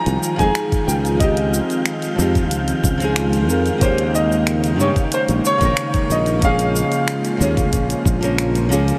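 A straight 4/4 groove at 92 BPM drives this smooth, relaxed sunset chillout piece, where a natural-toned grand piano sings the melody over a fingerpicked classical nylon-string guitar roughened by vintage 12-bit sampler grit, both trailed by diffuse ambient delay, while a dark, breathy pad with chorus and a faint, mellow wind-like tuned noise texture hover in the background, a bright, growly fretless bass sits up front, a layered deep house kit of finger snaps, hi-hat and shaker ticks along, and a gritty, overdriven electronic kick enters at 0.4 s, with the dreamy mix soaked in huge reverb as the chords drift through Fm9, Dbmaj9#11 and Bbm7.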